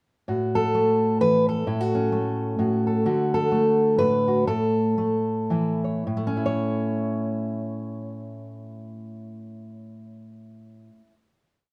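A moderate studio reverb surrounds a short, peaceful folk piece for solo fingerpicked steel-string acoustic guitar, its dark, full-bodied dreadnought tone sitting up front. Played in a lilting, swung 3/4 with an alternating thumb, the guitar wanders through a free melody over a simple progression from A5 through F#m/A and D back to A. It slows from 3.0 seconds and settles onto a final chord held from 6.1 seconds.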